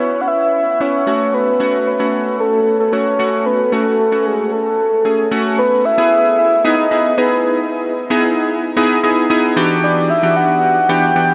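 Pop in E major at 113 BPM, carefree and upbeat, tuned to A4 = 445 Hz: a round, dark, octave-layered synth lead with vibrato, chorus and a diffuse ambient delay carries the melody over bright, detuned analog keys with ring modulation and a filter sweep, both up front in a dreamy mix soaked in a huge reverb, as the harmony moves from C#m7 and F#m into a drop at 5.6 s on Emaj7 before reaching Gmaj7/E at 9.6 s in this excerpt from a longer piece.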